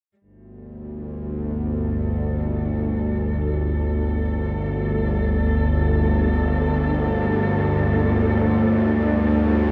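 A cathedral-like reverb with a long, cavernous tail fills this short excerpt of dark ambient drone, giving it a heavy, brooding atmosphere. From 0.7 seconds a bowed-like drone sits up front in the low register, a tense, bright, sawtooth-edged tone doubled in unison, with a layer of noise, its own reverb and a slow attack that lets it bloom and hang. Behind it, a dark cello section in a studio setting plays sustained chords in a middle register from 0.2 seconds, fading in gradually across the passage until it stops at 9.7 seconds. The cellos sound distant and expressive, with vibrato and gliding portamento, and they open on a G minor add-nine chord. The drone also carries vibrato and a long release, so the two parts together form a shadowy, suspended wash.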